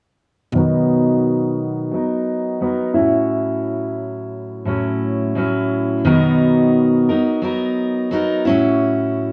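Indie pop with a dreamy, hazy mood, this brief section from a longer piece features a picked steel-string acoustic guitar playing accompaniment from 0.5 to 9.3 seconds, its full-bodied jumbo tone sitting up front. The guitar carries a warbly pitch drift and a low-pass filter that sweeps through the passage as it moves between Bmaj7 and A6. A wet studio reverb places it in a single room where the band plays live.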